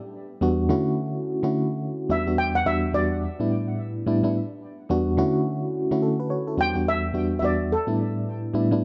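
Dark, warm production with moderate plate reverb frames this slick, confident R&B excerpt at 107 BPM with a swung 16th feel in E dorian, where a mellow, tremolo-laden FM electric piano enters up front at 0.4 seconds with fast-attack, decaying chords cycling through Em7, Dmaj7 and A7sus4, and a shimmering, metallic steel pan played with soft rubber sticks carries the tape-echoed melody from 2.1 seconds.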